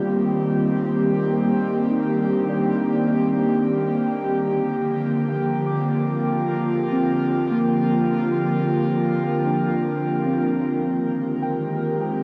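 An airy, breathy pad holds sustained chords from the start, sitting up front with a mellow, full-bodied tone and a soft, slow-swelling attack. Beneath it, muted, felt-like synth keys play dark, intimate arpeggios higher up, fading in across the first 10.8 seconds with chorus and tape echo. A glassy, ethereal glass harmonica fades in alongside them, adding a pure texture until it drops out at 10.8 seconds. This peaceful, luminous ambient excerpt moves at a straight 77 BPM in 4/4, passing from Cm7 to Bb and opening onto Abmaj9 as a brief new section begins. Shimmer reverb on all three parts and a huge space with an 8.0-second tail give the sound its glow, while a worn, warbling cassette character adds a warbly pitch drift.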